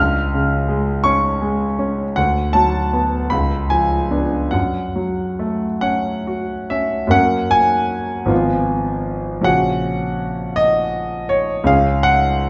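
A close, smooth-toned concert grand piano with a deep, vintage-tinged bass plays this passionate, brooding fragment of a romantic character piece alone, moving with free rubato in a slow 6/8 at 45-56 BPM through a lush recital-hall reverb, and turning from F# minor to F# major at 7.1 s.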